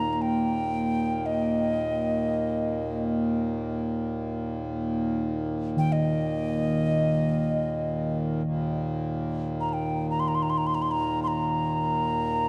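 Spacious and peaceful, this free-time world meditation piece in Eb major pentatonic, cut from a longer work, sets an up-front alto ocarina melody, airy and clay-toned with a crisp attack and tape echo, over an up-front reedy, breathing hand-pumped harmonium drone, while a pure, ringing quartz singing bowl with slow beating adds mellow texture until 9.0 s, all within a dark, warm production steeped in a wet church reverb.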